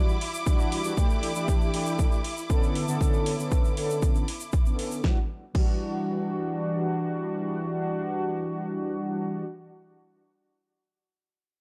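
A dry, gritty recording with light reverb and a digital ambience frames this sleek, groovy nu-disco excerpt at 118 BPM in E dorian, tuned to A4 = 445 Hz, moving through Em9, A7sus4 and Bm9. A punchy electronic kick sits up front beside a pop drum kit with a fat snare, metallic hats and crash, while a tube shaker adds small-room texture and a lush, bowed symphonic string section holds biting sustained chords with vibrato and sidechain pumping until 5.1 s. Mellow, brassy sawtooth synth brass with chorus and tape echo carries the accompaniment through a filter sweep and plays on alone after the drums stop at 5.7 s, closing at 9.5 s.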